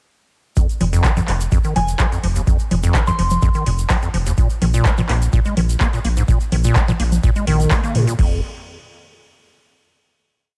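Hypnotic and raw, this short acid house piece in F minor runs at 126 BPM on an overdriven four-on-the-floor kick drum and a booming analog drum machine with metallic hi-hats, handclaps, congas and crash, a grainy tube shaker playing sixteenths, a squelchy, resonant square-wave acid bass line with accents, slides and tape echo, and a round, dark off-beat analog bass with sidechain pumping, while a soft FM synth bell with chorus, 12-bit sampler grit and tape echo adds short phrases between 1.8 and 3.7 seconds before the groove gives way to a final chord at 8.2 seconds.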